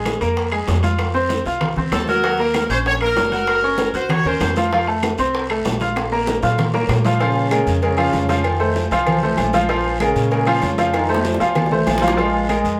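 This salsa in Bb minor at 193 BPM, cut from a longer piece, is danceable and driving in a straight 4/4. A bright, up-front baby grand piano carries the accompaniment throughout with a natural, long sustain, while a dark, thumpy pizzicato upright bass on gut strings anchors the low end. Behind them sits a dense percussion bed: thick-skinned vintage congas, tight high-tuned bongos and cowbell heard from a distant large room, ringing metal-shell timbales with agogo bells, close woody claves and a raspy, saturated guiro. A brilliant, punchy horn section states the melody up front from 1.9 to 4.6 seconds with light vibrato. At 7.2 seconds a smooth-topped, tight trombone section enters with a warm second line as the harmony alternates between Bbm7 and F7. Drum fills punctuate the phrases, and a wet studio reverb places the whole band together live in one room.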